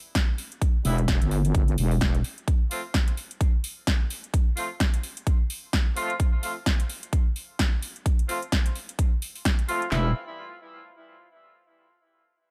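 A big-room dance drum kit opens this gritty, bouncy bass house excerpt at 129 BPM with a swung sixteenth feel in E phrygian, its punchy kick, layered punchy snare and handclaps up front in studio reverb, joined by a second kit layer of punchy snare and metallic hats. A warm, vibrato-tinged horn section plays tight octave-doubled stabs through tape echo, a low-pass filter and sidechain pumping, and a heavy, saturated wobble bass with chorus and overdrive surfaces from 0.8 to 2.2 seconds and returns at 9.9 seconds as the harmony moves from Em to F and back to Em.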